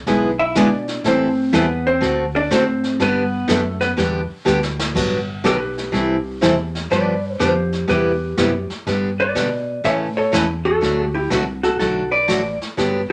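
A growly, round fretless bass opens this playful, cheerful western swing clip, joined at once by a brushed jazz kit with dark cymbals and a boomy kick and by an up-front steel-string acoustic guitar with audible finger squeak, while a clean, compressed vintage hollow-body jazz guitar solos through the first 5 seconds before a drum fill at 4.5 seconds carries the band into a second section, set in a wet studio reverb.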